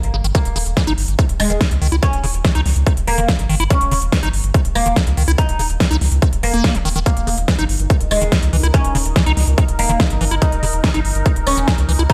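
The sound is dry and close, with little room around the parts, and this short cut from a longer psychedelic trance track runs at 143 BPM in a straight 4/4, driving and hypnotic over an Eb5 chord. A layered big-room dance kit with a huge snare and crisp hi-hats opens the cut, and a punchy, tape-touched electronic kick sits up front from 0.3 seconds, both carrying studio reverb. Underneath, a round, deep analog bass with a nasal, filter-plucked edge and tube saturation holds the low end, while a squelchy, resonant acid bass riff weaves above it through phaser, delay and sidechain pumping. An acoustic oud, bright and woody with its plectrum-plucked double strings, carries the melody, treated with the same phaser, delay and pumping. At 7.4 seconds a bubbling sawtooth texture with random filter steps fades in softly beneath the rest, its sustained chords washed in chorus and reverb and pulsing with the sidechain.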